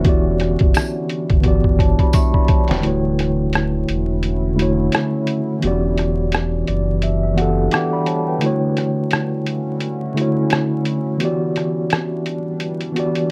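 A mellow tine electric piano sits up front in this dreamy, nostalgic lo-fi hip hop excerpt, its clean tone heard through built-in speakers as it comps on alternating Em7 and Dmaj9 chords in D major and adds a fill starting at 6.3 seconds. Beneath it, a compressed, pitched-down sampler-style drum kit with a thumpy kick, a medium-tuned snare, hi-hat and rim click holds a relaxed 86 BPM in 4/4, swung at 58% on the sixteenths, with a short drum fill leading into a break at 2.8 seconds. A deep, full sine sub bass with an added octave plays up front until 7.7 seconds, while a bright, jingly tambourine adds close acoustic shimmer near the start. In the background, a moody, detuned sawtooth pad with a sub octave, chorus and its own reverb sustains slow-attack chords. The track is tuned slightly flat to A4 = 435 Hz and wrapped in vinyl crackle and moderate studio reverb, giving it a hazy, worn character.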